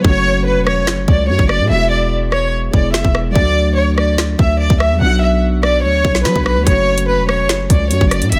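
Cold and tense, this drill excerpt runs at 145 BPM with a half-time feel in F# minor, as an intimate, bowed chamber violin section with vibrato and a soft sul tasto attack carries the melody over a dark, mellow concert grand piano with long sustain, moving through F#m, Eadd9, D and Bm. Up front, a distorted, aggressive 808-style bass with a fast attack and noise layer sits alongside a produced drill kit of hard-clipped kick, woody snare, metallic hi-hats, rim clicks and finger snaps with a tape-warm character. The mix sits in low-passed digital ambience, and a break runs from 0.0 to 6.7 seconds.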